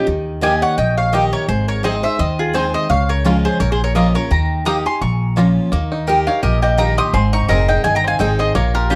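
A brisk swung 4/4 at 170 BPM, tuned to A4 = 442 Hz, drives this rustic, haunting bluegrass passage cut from a longer piece. The upright bass sits up front from 0.1 s with a woody, thumpy pizzicato tone on steel strings, while a picked steel-string acoustic guitar lays down full-bodied dreadnought accompaniment, complete with audible finger squeak. A mellow, round mandolin carries the melody up front on its double strings, joined at 0.4 s by a twangy, percussive fingerpicked banjo and a second mandolin punctuating with picked stabs further back in the mix. A lap resonator guitar, played with fingerpicks and slide, threads a bright, metallic, nasal second line coloured by analog delay. The harmony moves through Eb, Ab, Db and Bbm before a second section at 5.7 s returns to Eb and Ab, all set in a light reverb.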